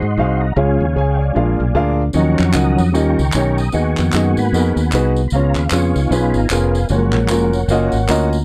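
A swung 4/4 groove at 152 BPM drives this jubilant, soulful uptempo gospel excerpt in F# major, with a fingered electric bass sitting direct and up front beneath an intimate, woody upright piano whose action noise and long sustain come through clearly. A soft, flute-like tonewheel organ carries the solo on clean sustained chords, colored by chorus vibrato and a slow rotary speaker, while tambourine, tube shaker and group handclaps join from 2.1 seconds with a small-room acoustic sound. Light reverb and a dark, warm production frame a chord path that moves through D#m7 and C#7 to settle on F#maj7, and the piano adds a short fill at 7.7 seconds.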